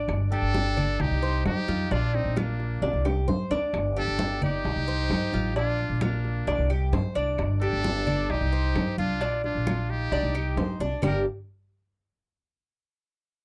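A growly, thumpy upright bass sits up front in this nostalgic, danceable Cuban son and guajira excerpt in G minor, plucked pizzicato from G1 to G2 at 132 BPM in a straight 4/4. A picked Cuban tres with metallic double strings, some doubled at the octave, spins arpeggios over a cycle that moves from G5 through Cmadd9 and Bb to Csus2 before returning to G5. From 0.3 seconds a buzzy, thin trumpet with a metal mute carries the jazz-style melody with light vibrato, soft attacks and scooped notes, while a bright trumpet with a smooth top plays a pop-style second line beneath it. The percussion brings warm congas struck with hard hands in a small room, tight high-tuned bongos and woody claves, the last two vintage and band-limited in the background, with drum fills at 2.8 and 10.8 seconds. The sound is a dry, close 1970s-style studio recording with little reverb, and the clip is cut from a longer piece.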